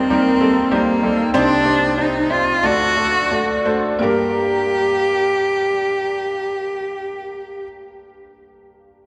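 Driving yet earnest, this pop excerpt in G minor moves in 4/4 at 85 to 99 BPM, with a light sixteenth-note swing and a tempo that slows through the opening 4 seconds. A single bowed cello carries the melody up front, its warm tone shaped by vibrato, a soft attack and expressive portamento, with analog delay trailing its phrases until it stops at 7.6 seconds. A concert grand piano supplies the accompaniment, clear and natural with a deep bass, treated with analog chorus, and it continues alone until 9.1 seconds. The harmony moves from Eb through Cmadd9 to D before settling on G minor as a new section begins at 4.0 seconds. A long plate reverb soaks the whole mix, giving it a dreamy space around the two upfront instruments.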